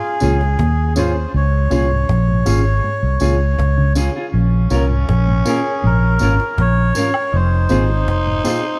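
A dark, warm production with light reverb frames this sunny, uplifting roots reggae fragment, cut from a longer piece, in a straight 4/4. A nasal, breathy melodica with a plastic-case reediness carries the melody through dub echo, while a raspy, growling tenor saxophone plays a second line beneath it, punchy and present with light vibrato, also bathed in dub echo. Up front sits a round, foam-muted fingered electric bass with an amped, vintage tone, underpinning a clean, picked semi-hollow guitar accompaniment with dub echo and a compressed, fingered electric guitar playing low arpeggios through analog chorus. An overdriven reed electric piano adds gritty stabs through a combo amp with fast tremolo, all three of these keyboard and guitar parts tucked into the background. A woody cajon struck with hard hands, with faint snares, keeps the drums back in the mix, joined by close, dry tambourine and woodblock alongside egg shaker and group handclaps. 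The harmony rests on Db before moving to Fm at 7.3 seconds.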